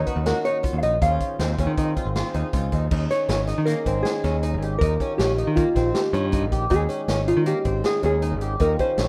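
Intricate and driving, this progressive instrumental piece moves at 158 BPM in an uneven 5/4 meter with a straight feel, and it is cut from a longer piece. A dark, clean hollow-body jazz guitar carries the melody throughout, while a breathy flugelhorn with light vibrato and scooped notes adds a second line in the background only until 2.7 seconds. Beneath them, a mellow tonewheel organ sits back in the mix, lightly overdriven, with chorus vibrato and a slow rotary speaker. A fingerpicked twelve-string acoustic guitar enters at 0.1 seconds with boxy, shimmering arpeggios, together with a vintage drum kit whose tight kick, medium-tuned snare, hi-hat and crash have a rolled-off top. A bright picked electric bass stands up front, and the harmony moves from a rootless Bmaj9/D# through Dbsus2 and Ebadd9 in a rough home-demo mix with lush hall reverb.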